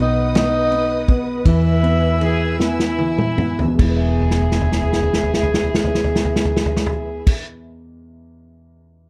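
A tender, heartfelt pop ballad in a lilting six-eight opens with a mellow, jazz-style tenor saxophone with vibrato singing up front over a dark baby grand piano, lush bowed strings and a round, foam-muted vintage electric bass, all easing back in pace through the opening. An acoustic drum kit played with bundle sticks, with a punchy kick and shadowy cymbals, joins at 0.4 seconds and rolls through fills, while a stopped, nasal French horn section adds a metallic second line from 2.2 seconds. The saxophone falls away at 3.0 seconds, leaving the horns, strings, piano, bass and drums to carry this brief, dry-sounding fragment of a longer piece.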